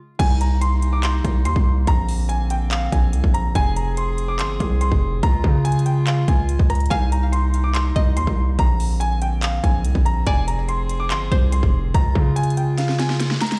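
A half-time trap groove of hard-clipped kick, sharp snare, handclaps, rim clicks, metallic hats and a crash, all roughened by vintage 12-bit sampler grit, drives this menacing, hard-hitting hip hop excerpt, where a saturated, distorted 808-style bass hits heavy and up front, a clear concert grand piano carries a high melody through delay over soft-attack sustained chords from a close-miked woodwind section with light vibrato, a twangy, warbling resonator pluck adds a bright second line with chorus and phaser from 6.9 s, and a drum fill at 12.8 s closes it all inside a stone-room reverb that sounds like a big sound system in a bare room.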